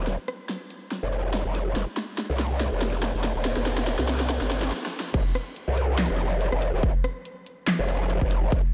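A half-time groove with a light swing on the sixteenths drives this short, chaotic and menacing cut of heavy wobble dubstep, taken from a longer piece. For the first 5.1 seconds it is a build-up: the big-room dance drum kit runs a fill of crash cymbal, handclaps, hi-hat, rim click and a huge, overdriven snare, and a brief stop arrives at 4.7 seconds. Underneath, an aggressive growl bass holds the low end with a wobbling, formant-filtered tone that is saturated, bright and sustained, thickened by chorus and overdrive. At the drop, the electronic kick drum enters at 5.1 seconds, punchy, layered and overdriven with studio reverb. Both the kick and the bass sit up front in a mix wrapped in light digital ambience.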